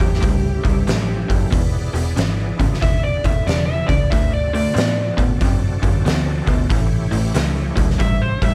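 Driving and swaggering, this blues rock power trio cut with a southern rock lean moves at 93 BPM in 4/4 with a swung eighth-note feel, sitting in A mixolydian as the chords run A7, E7, D7 and back to A7. An oversized, low-tuned acoustic drum kit sits up front with a boomy kick, a fat snare and hi-hat, its big pumping room sound saturated and gritty. Beneath it, a vintage muted picked electric bass gives a dark, round, foam-muted foundation, while a raw garage guitar, bright and double-tracked, drives an overdriven picked riff in the low register. An overdriven slide guitar, dark in tone and played with fingerpicks, carries the melody through plate reverb. In the background, an overdriven tonewheel organ holds thick sustained chords through a slow rotary speaker and chorus vibrato, with all five parts playing throughout this 8.5-second cut from a longer piece, in a dry overall mix.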